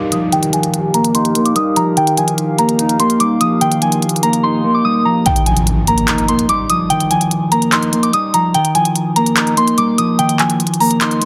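Triumphant yet dreamy, this half-time trap hip hop excerpt at 146 BPM in Eb major opens on an Ebadd9 chord, with a pure FM synth bell of fast attack and gentle decay carrying the melody up front over a dark, clean, fingered electric guitar and a hollow, flute-like pad that holds sustained chords until about 5.2 seconds. Crisp hats and handclaps from an electronic trap kit push forward from 0.1 seconds, while a filter sweep runs through the opening and a downlifter marks the start. At 5.3 seconds the kick drops out and an impact lands as the second section begins, all under light reverb and a dense, heavily limited modern master.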